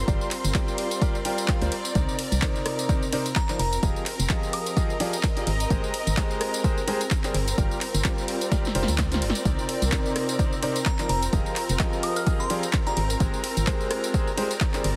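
Piano house at 128 BPM with a light 16th-note swing, bittersweet yet energetic, cut from a longer piece and moving through Gm7, Cm9, Fm9 and Abmaj9. A bright, brilliant concert grand plays the riff with delay over an up-front, hollow organ-like FM bass with tube saturation, an overdriven, punchy electronic kick, and an analog drum machine of handclaps, hi-hat, ride, rim click, snare and tambourine, with a drum fill from 8.5 to 9.5 seconds. Behind them a biting violin section holds sustained chords with vintage sampler grit, a distant string section with portamento adds texture, and a glassy, crystalline synth bell with chorus briefly carries the melody, all pumping against the kick except the drums and bell, with a heavily compressed, radio-like finish.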